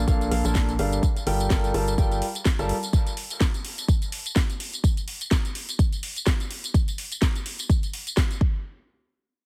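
A heavily compressed, radio-like mix with little reverb opens on the drop of a bittersweet yet energetic piano house piece in G minor at 126 BPM, tuned to A4 = 436 Hz, with a swung 16th-note feel. A hollow, organ-like FM bass and an up-front concert grand piano riff, gritty with vintage 12-bit sampler character and dub echo, both pump against the sidechain over Bbmaj7 and Gm9 chords before stopping at 2.7 seconds. From there the punchy electronic kick and a house kit of cracking snare, metallic hi-hats and tambourine carry on alone in a small room until about 8.5 seconds.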